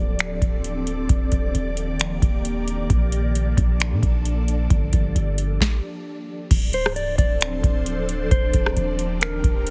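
An ethereal, airy pad and a deep, boomy 808-style bass open this dreamy, blissful piece of atmospheric cloud-rap, with a booming analog drum machine joining almost at once in a half-time feel. The pad holds slow-attack, sustained chords through ensemble chorus, built-in reverb, a phaser and sidechain pumping, moving through Dm7, Ebmaj7, Bbmaj7 and Gm7. Up front, the drums bring a deep kick, crisp snare, metallic hats, rim clicks, finger snaps and a crash, their electronic sound re-recorded in a small room, while the sine-like bass hits with a fast attack and then decays. A brief stop arrives at 5.6 seconds, and at 6.7 seconds a mellow, dark, clean electric guitar enters with a fingered melody trailed by tape echo. The mix is dry and heavily compressed, with a radio-like sound that gives this short section of a longer track a dense, close feel.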